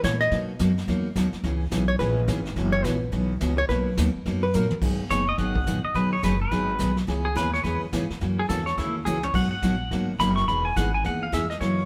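A band playing live in a stone room, with moderate reverb, gives this cheerful, swinging western swing and country excerpt a natural, roomy sound. A dark, clean hollow-body jazz guitar takes the opening solo until 4.8 seconds, over a bright, full-bodied picked steel-string acoustic guitar, a woody, thumpy upright bass on gut strings, and a brushed drum kit with dark cymbals and a boomy kick that adds short fills. From 5.1 seconds a compressed pedal steel guitar, played with fingerpicks and slide and shaped by volume swells, carries the lead through jazzy seventh chords to the end at 11.9 seconds.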